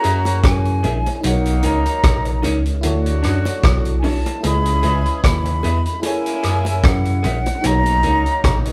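A breathy, tongued flute carries a longing, bittersweet melody from the first moment of this lovers rock reggae excerpt, over a loose horn section with light vibrato, a swung vintage kit of punchy kick, hi-hat and rim click, and a worn, slightly out-of-tune tine electric piano playing the bass up front. A glassy, bell-like FM electric piano adds chorused, dub-echoed chords, while an electric guitar through a small old amp punctuates the groove with slightly broken-up, lo-fi stabs. Round, low-tuned bongos with dub echo sit in the background from 0.3 to 7.8 seconds, all within a moderate room reverb that sounds like a band playing live together.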